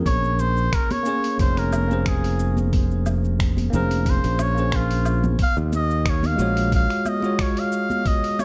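A bell-like tine electric piano opens this short sunset chillout cut in Bb minor, carrying a vintage 12-bit sampler grit and digital delay, before a cup-muted trumpet enters at 0.1 seconds with a soft, veiled melody touched by light vibrato and delay. Underneath, a growly, punchy fingered electric bass sits up front until 6.9 seconds, while a thumpy, tape-toned electronic kick and an overdriven, dusty sampler kit of finger snaps, hi-hat, shaker and woodblock lay down a gently swung 90 BPM groove, with very quiet, close, high-tuned congas joining at 0.4 seconds. The mood is smooth and wistful, moving from Bbm9 to Ebm11 at 5.4 seconds in a dry overall sound.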